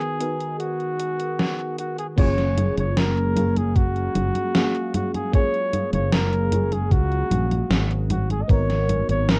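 Vaporwave with a nostalgic, dreamy mood, this excerpt moves at an unhurried 76 BPM in F# major, drifting from G#m7 to F#maj9 and back. A mellow, soft-attacked flugelhorn carries the jazz-style melody up front, its notes trailed by tape echo, while an FM electric piano layered with a soft pad supplies lush, decaying chords coloured by phaser and chorus. Beneath them, a very quiet, warbling tape-like pad holds sustained chords with a detuned, lo-fi haze. A gated 80s digital drum machine plays from the start with congas, crash cymbal, hi-hat and a gated-reverb snare, and the opening 2.2 seconds act as a break before a fretless electric bass enters, dark, round and punchy with analog chorus. A thumpy electronic kick joins at that same point and drops out at 8.7 seconds. The whole excerpt has the rough feel of a home demo dubbed to cassette, with only light reverb around it.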